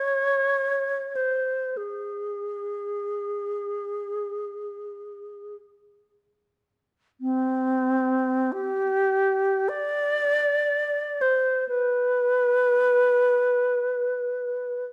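An unaccompanied alto flute carries this meditative, yearning classical passage, its airy tone, vibrato and soft attacks moving between C4 and D5 in free, expressive time, tuned to A4 = 437 Hz. Cut from a longer piece, it runs to about 14.8 seconds, with a second section beginning at 7.2 seconds. The dark production wraps the up-front flute in light reverb.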